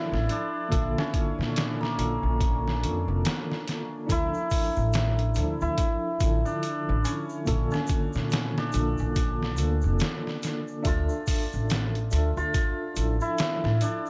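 A swung 71 BPM trip hop groove in 4/4 sets a hypnotic, smoky mood in D harmonic minor, built on a gritty, pitched-down sampler-style kit with a thumpy kick and up-front pizzicato upright bass, woody and tube-saturated, while a tremolo-tinged tine electric piano rocks between Dmadd9 and Bbmaj7, a shimmering hammered dulcimer carries the melody through tape echo, a very quiet detuned bowed-like drone holds D4, and a distant egg shaker joins at 4.1 seconds, all in a dry, close mix cut from a longer piece.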